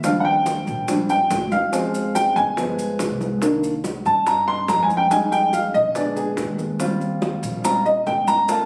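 Afro-Cuban jazz at 142 BPM in a straight 4/4, sophisticated and driving, heard in a short cut from a longer piece. An upright piano sits up front and solos through the whole 8.7 seconds, its tone intimate and boxy with short sustain and audible action noise, moving over a progression that opens on Ebmaj7, passes through Cm9 and Bb7b9, and settles on Eb69 at 6.8 seconds. Beneath it, a pizzicato upright bass on gut strings gives a dark, thumpy foundation. Ringing, medium-tuned congas and round, low-tuned bongos played with soft hands stay in the background, the bongos close and dry, while grainy, mellow maracas add texture. The whole take was captured on a phone in the room, with club reverb and compression.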